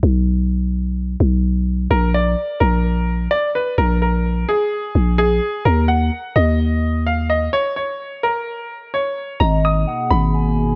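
A growling, buzzy 808-style bass opens this menacing, hard-hitting hip hop excerpt in Eb minor at 128 BPM with a half-time feel, and a bright grand piano, low-pass filtered and carrying the melody with audible action noise and short sustain, joins at 1.9 s over Bb7(no3) and Eb7(no3) harmony. At 9.4 s the music shifts to Abmadd9 as a hollow, woody clarinet-like synth lead with chorus, delay and vibrato adds a second line, followed at 9.8 s by a warbling, nostalgic tape-like pad holding lo-fi sustained chords through chorus and its own reverb. The mix is dry and close, with the bass and piano sitting up front.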